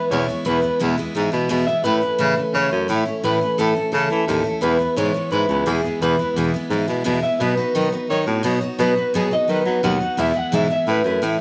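A straight 4/4 rock groove sets a rowdy, upbeat mood in this short cut, moving through E, A and B chords. A twangy, slightly broken-up electric guitar through a small old amp carries the melody with harmonic tremolo and tape echo, over a bright, full-bodied picked steel-string acoustic guitar playing the accompaniment. A breathy baritone saxophone with vibrato holds down the bass line, and light small-room reverb gives the sound a roomy feel.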